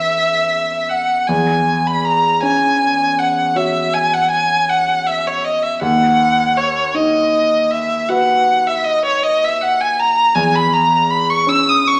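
A solo violin opens on a high E6 over a concert grand piano in this tender, serene romantic duo, a brief passage cut from a longer classical piece. The violin carries the melody up front with a rich, smooth, even tone and vibrato, its bowed line sitting clearly above the accompaniment. Underneath, the piano supports it with an intimate, natural sound, a deep bass and short sustain, and its action noise is audible. The gentle lilt of compound metre is loosened by rubato, and the harmony moves through F#5/E at 1.3 seconds, B/D# at 5.8 seconds and C#m7/E at 10.3 seconds. A recital hall's reverb gives the performance a wet, resonant space, though the overall sound has the character of a small speaker.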